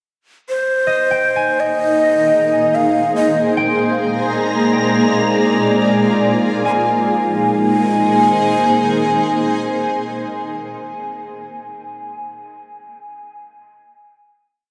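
Unfolding in free time, this luminous, weightless ambient piece sets a breathy, close-miked shakuhachi's arching motifs with dub echo up front against a bright, blurred granular cloud pad whose slowly shifting chords move through a filter sweep, while a concert harp scatters ringing, echoing notes in the background, a warbling, chorused analog drone hums beneath, and an airy wind-like noise texture holds a high note from 4.0 to 6.7 seconds, all bathed in a wet plate reverb as the echo-heavy mix settles onto a final chord at 6.7 seconds.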